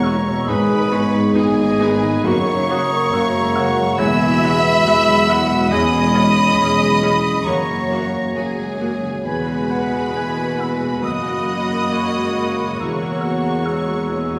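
Hopeful and uplifting, this rubato cinematic passage, cut from a longer piece, has a lush, vibrato-laden violin section singing the melody over a hollow, close-miked flute, a roomy oboe, a clarinet and a second, focused violin section on supporting lines. Beneath them, a soft felt-muted upright piano with audible action noise, a mellow French horn section holding sustained chords, a distant viola section, and a bowed cello and double bass foundation sit in the background, while a very quiet concert harp rings out arpeggios, all wrapped in the reverb of a recital hall.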